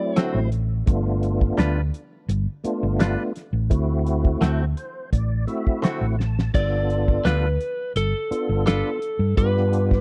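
A slightly broken-up slide guitar played with fingerpicks opens alongside a fat, key-clicking tonewheel organ on a slow rotary speaker, then a thuddy cloth-damped drum kit, round hollow-body bass and bright, twangy direct-recorded clean guitar stabs with phaser join this gritty, soulful straight-eighth soul blues at 85 BPM over D7 and G7, the organ taking a fill from 4.4 seconds before the slide returns at 6.5 seconds, all in a dry, close 1970s-style studio sound.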